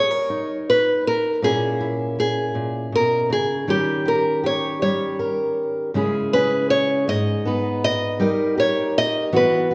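The nylon-string guitar carries the melody at the front of this short excerpt from a longer acoustic folk-pop ballad, its fingerpicked tone small and warm against the deeper guitar below it. A fingerpicked steel-string acoustic guitar, dark and close up, plays the accompaniment in the lower register beneath it, and both guitars sound together across the full 9.7 seconds. The mood is reflective and melancholic, moving slowly in 6/8 at 53 dotted-quarter beats per minute with a straight feel. The harmony opens on D#7/G and passes through A#m7b5 and D#7 before a new section begins at 5.9 seconds, turning to C#m and G#m and landing on D#/G. A wet concert hall reverb, typical of a church or hall, surrounds the playing with a long, resonant tail.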